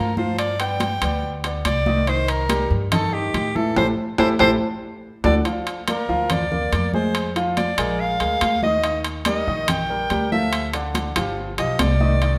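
A driving, straight 4/4 pulse at 142 BPM carries this fiery Afro-Cuban jazz passage in G minor, with high-tuned, thick-skinned congas played with soft hands and ringing, close, dry metal-shelled timbales over a woody, thumpy pizzicato upright bass. A warm, polished baby grand piano comps beneath an intimate, breathy soprano saxophone whose whispered tone, light vibrato and scooped notes sit up front. After a band accent and a drum fill ending at 5.5 seconds, the saxophone takes a solo over moving jazz harmony, all set in a large, wet studio reverb.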